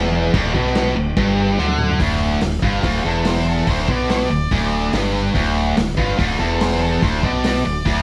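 Classic rock with a swaggering, confident stride, this excerpt opens on a tight, double-tracked distorted guitar riff sitting up front over a growling, overdriven fingered bass, with a muffled, lo-fi vintage drum kit joining at 0.3 seconds. A drum fill at 1.6 seconds ushers in the next section, where a dark octave-fuzz lead guitar solo enters at 2.6 seconds, set a little back in the mix. The band sounds like it is playing live in one room with light reverb, the kit's dark cymbals and rolled-off top lending it a small-room character.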